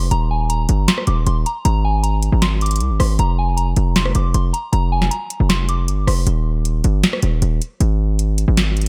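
A soft, warbling FM synth bell carries a melancholic melody through chorus, low-pass filtering and diffuse delay over a distorted, saturated 808-style bass and a booming analog drum machine with metallic hats, rim clicks and a tonal snare, giving this hard-hitting half-time trap excerpt at 156 BPM its drive as the bell falls away at 6.2 seconds, leaving bass and drums to carry on until 8.9 seconds in a light reverb.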